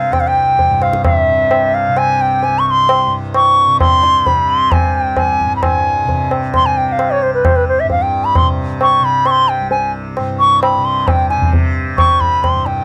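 A bright, reedy bamboo bansuri carries a devotional, serene Hindustani classical melody up front with soft-attacked vibrato over a shimmering, buzzing tanpura drone, joined at 0.1 seconds by high-tuned, short-ringing tabla with a compressed, saturated edge at 132 BPM in 4/4, all in a dry, gritty hardware recording with light reverb, cut from a longer piece.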